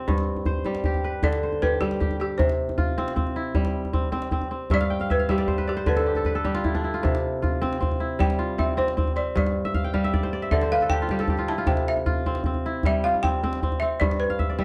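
A dark, warm production with moderate studio reverb frames this short cut from a longer piece of West African string and xylophone music, hypnotic in mood and set in C major at 103 BPM in a straight 12/8 counted in dotted quarters. The kora opens at 0.0 seconds, fingerpicked, crisp and ringing up front as it spins arpeggios across a broad span from G2 to G5. A medium-tuned djembe joins almost at once, its soft hands heard in a live room. The balafon enters at 1.2 seconds with a woody, round melody played with rubber mallets, dry yet airy, ranging from G4 to A5 and taking the solo role through the passage. The kora adds fills, the first arriving at 4.7 seconds, while the harmony sways steadily between G and C.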